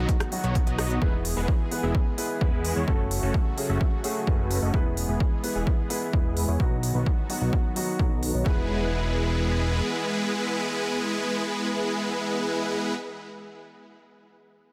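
Huge, detuned supersaw chords lead this uplifting, triumphant excerpt of festival progressive house, riding up front with sidechain pumping, delay and a filter sweep through the opening 8.5 seconds. Beneath them a fat, nasal analog bass growls with saturated, evolving tone, also pumping and sweeping until it drops out at 9.8 seconds. A punchy electronic kick sits up front alongside a big-room dance kit of crisp hats and rim clicks, both ending by about 8.6 seconds. A warm baby grand piano adds pumping, delayed accompaniment, while an airy, bright unison pad with chorus and phaser hangs in the background on sustained chords. The harmony moves from B through E, F#m and back, settling on E as a brief second section begins at 8.5 seconds, with light reverb around the mix and the piano lingering last until 14.7 seconds.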